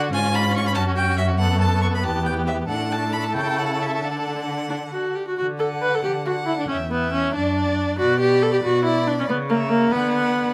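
A focused violin with vibrato carries the melody high above a smooth, distant second violin, a clear, up-front viola and an expressive cello bass with portamento in this spirited, graceful fragment of a quick classical-period string quartet movement in D major, played at 93 BPM in a rubato 6/8 with light reverb and close, detailed miking.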